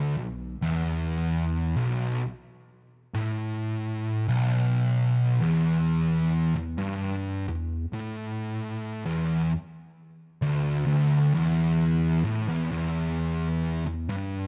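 Set at a slow 66 BPM in a straight 4/4, this brooding, heavy metal excerpt moves with a deliberate, lumbering pulse. A lone fuzz guitar carries the whole passage from 0.0 to 14.5 seconds, picked in a low register from B1 to A2. Its tone is dark and saturated with distortion, double-tracked for extra weight and placed up front in the mix, with a slapback echo trailing each note. The production is dark with light reverb, giving the sound a close, murky feel. Tuned slightly below standard pitch, at A4 = 435 Hz, the guitar sounds subtly heavier and more ominous.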